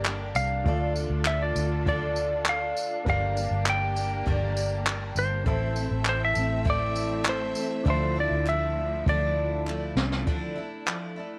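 Wistful and reflective, this short acoustic pop excerpt moves at 100 BPM in a straight 4/4 in D minor, passing through Gm, Dm, Gm and Am before settling on a Dmadd9. A clean, dark lap steel guitar carries the melody up front, its slide tone compressed and played with fingerpicks in a high register. Beneath it, a picked twelve-string acoustic guitar adds a bright, shimmering, octave-doubled accompaniment, while a very quiet, woody upright piano and a lush, bowed string section with vibrato sit in the background. A dark, foam-muted vintage electric bass gives a round, punchy low end, and a jazz brush drum kit with a boomy kick, high-tuned snare, tambourine and handclaps plays in a studio room with a rolled-off top, joined by a faint, crisp group handclap. A drum fill runs from 7.9 to 10.3 seconds, after which the drums carry on until 11.0 seconds and the guitar rings on until 11.4 seconds, all in a dry sound with little reverb.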